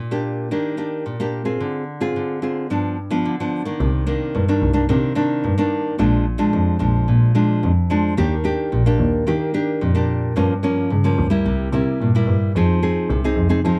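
A bright, fingerpicked nylon-string guitar sits up front with classical poise, opening alone over Ebmaj7 before an intense, distant bowed double bass with vibrato joins at 3.8 seconds, giving this yearning, nostalgic samba and choro piece in C minor at 110 BPM a dark production softened by moderate studio reverb.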